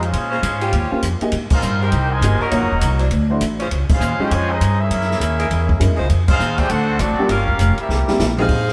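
Big band swing with a dramatic, sultry mood, taken from a longer piece and driven by a brisk swung pulse. A mellow trumpet section with light vibrato carries the melody over a straight-muted trombone section, nasal and vintage in tone, that plays a second line in the background. A woody, thumpy pizzicato upright bass sits up front beside an open jazz drum kit with dark cymbals and a boomy kick, while a bright saxophone section holds sustained chords with vibrato from 0.3 seconds. An intimate baby grand piano with audible action noise and short sustain joins as accompaniment at 0.9 seconds, moving through rich extended harmonies such as Bbm9, Abmaj9 and Gb13. The band hits accents together at 1.5, 3.9 and 6.3 seconds, a drum fill closes the phrase, and a close-miked, tight saxophone section takes over the melody at 8.4 seconds. An echo chamber reverb places the ensemble further back in the room.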